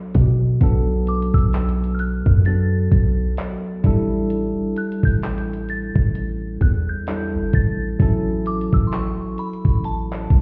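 Moody and longing, this slow contemporary R&B excerpt moves at 65 BPM in B minor with a swung sixteenth-note feel, drifting from Bm7 to A7sus4 at 3.8 seconds and F#m7/A at 8.0 seconds. A detuned 8-bit drum machine with a thumpy kick, hi-hat and handclaps sits up front beside a deep, boomy 808-style bass with a sine core and noise layer. A bright, bell-like tine electric piano carries the chords while a faint, crystalline FM synth bell warbles a high melody through chorus, tremolo and delay, the whole mix sounding muffled as if heard through a wall into a stone room.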